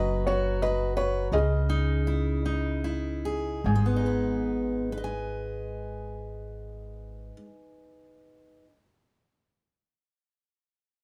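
A soft, mellow felt-muted upright piano carries the melody, its action noise audible, in this intimate, heartbroken acoustic folk-pop ballad in 3/4 that slows over its first 3.6 seconds, with an up-front, fingerpicked steel-string acoustic guitar with fresh strings and a woody, thumpy pizzicato upright bass beneath, all in light reverb, until the piano and bass stop at 7.3 seconds and the guitar rings on alone to 8.7 seconds in this fragment of a longer piece.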